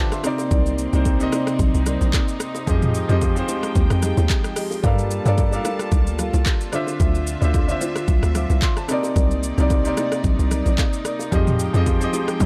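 Swung sixteenths at 111 BPM drive this deep, soulful amapiano excerpt, where an up-front, overdriven deep house kit of kick, metallic hi-hat, handclaps, rim click, shaker and toms sits alongside a hollow, bouncy log drum bass entering at 0.5 s, while a clear grand piano and a reedy, gut-string studio string section with sidechain pumping carry chords from Cm9 through Fm9, Gm9 and Dm9, a woody marimba adds delayed stabs in the background, and very quiet, bright bongos and congas fill out the percussion.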